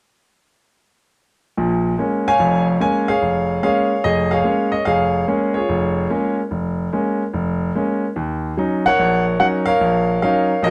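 A swung eighth-note feel in 4/4 drives this smoky solo jazz excerpt, where a clear, up-front grand piano with long sustain plays alone from 1.6 to 10.7 seconds across a span from deep bass to upper register, moving from a minor seventh chord to another at 8.2 seconds inside a dark, reverberant studio sound.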